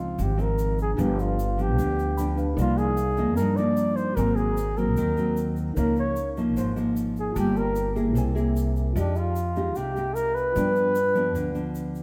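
A straight 4/4 bossa nova pulse at 150 BPM in C minor carries this smooth, melancholic excerpt, with a woody, thumpy pizzicato upright bass up front, a thumb-plucked nylon-string guitar and a grainy, compressed egg shaker that enters at 0.2 seconds. Over them a breathy flugelhorn sings the jazz-style solo melody with scooped notes, while a worn, slightly out-of-tune tine electric piano sits in the background and adds a brief fill at 2.0 seconds. The harmony moves through rich extended chords such as Dbmaj9, Cm11 and Fm9 before settling on G7, all heard from further back in a moderate echo chamber.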